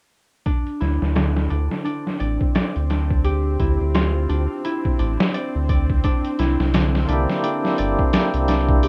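Trip hop with a smoky, dark mood, cut from a longer piece and swung at a loose, unhurried pace. A gritty, pitched-down sampler-style drum kit sits up front with a thumpy kick and a medium-tuned snare, compressed and tape-softened, its hats, kick, snare and small-room sound all dulled by low-pass filtering. A round analog bass enters at 0.8 seconds, deep and sustained with a fast attack, while a fingerpicked concert harp rings out arpeggios through a low-pass filter and tape echo. From 1.6 seconds a tense, nasal, string-like drone hovers in the background with vibrato and its own reverb. The harmony shifts from Dm11 to C9 at 6.0 seconds, and near the end, at 7.1 seconds, a percussive tonewheel organ arrives up front, lightly overdriven with key click and tremolo, all in a rough home-demo mix with light reverb.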